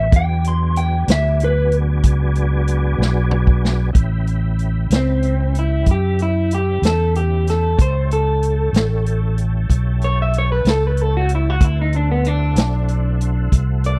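A swaggering, soulful slow blues in 12/8 at 63 BPM opens on an E9 chord. A slightly broken-up guitar through a small old amp plays the melody over a smooth tonewheel organ holding sustained chords through a slow rotary speaker and chorus vibrato, with a dark, round fingered electric bass and a vintage drum kit with a punchy kick and rolled-off top. After a drum fill, the guitar takes a clean solo from 3.9 seconds over A9, moving to D9 at 11.6 seconds, its picked tone touched by subtle chorus, while the dry, close 1970s-style sound keeps the drums, bass and guitar up front in a small room and leaves the organ quieter beneath them.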